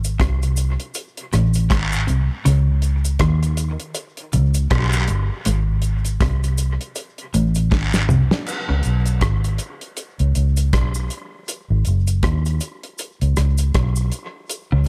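A round, punchy, foam-muted electric bass anchors this deep, spacious dub reggae excerpt with a swung feel, over a dry, damped drum kit with dark cymbals that plays a fill at 7.7 seconds, while echoing cabasa and guiro sit low and a clean, picked electric guitar riff with tremolo and dub echo hovers in the background before dropping away at 8.8 seconds, all in a small room with light reverb.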